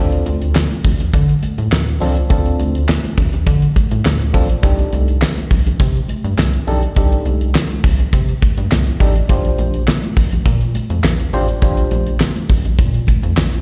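A rubbery, hollow square-wave bass sits up front with a bouncy filter pluck, driving this slick, funky early-eighties boogie funk excerpt alongside a dry, damped 70s drum kit with a fat snare, tight kick, hi-hat and handclaps. A glassy FM electric piano with a bell-like attack and warbling chorus and slapback echo plays the accompaniment until 12.1 seconds, while high-tuned, saturated congas with hard hands sit in the background. The chords move from Dm7 to Cm69 to Bb6, heard as a live gig through a venue's PA with recital hall reverb.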